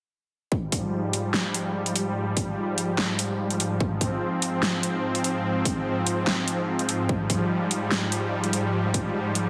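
This cut from a longer heavy wobble dubstep track opens at 0.5 s with a lush, detuned supersaw pad holding sustained chords on an F minor add9 and a punchy electronic kick, with the dubstep kit joining at 0.7 s. The mood is aggressive and menacing, moving at 146 BPM in 4/4 with a half-time feel and a light swing on the sixteenths. The pad sits up front with a slow attack, sidechain pumping and a low-pass filter sweep running through the whole passage, its sawtooth unison voices sounding bright in the range from Ab2 to C4. The layered kick is high-passed and tape-warm, while the kit brings a huge snare and metallic hats, both drum parts placed up front in a studio reverb. A moderate plate reverb surrounds the mix, and the dense, heavily limited modern master keeps it loud until the pad ends at 9.5 s.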